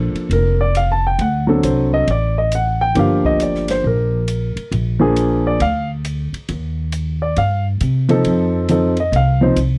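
Jazz piano trio in Bb major, swinging at 136 BPM in 4/4 with a playful, sophisticated mood, heard here as a short cut from a longer piece. A baby grand piano carries the melody between F3 and A5, its tone warm and up front. An upright bass, plucked pizzicato on steel strings, gives a woody, warm, up-front foundation from F1 to C3. An open acoustic drum kit enters at 0.2 seconds with hi-hat, kick, ride and snare, sitting well behind the other two; its small-room sound is airy and polished, with dark cymbals, a medium-tuned snare and a boomy kick. The harmony moves from Bbmaj7 through D7, Gm7, Bb7 and Ebadd9 to F7, and the whole has the dry, close feel of a 1970s studio session touched with light reverb.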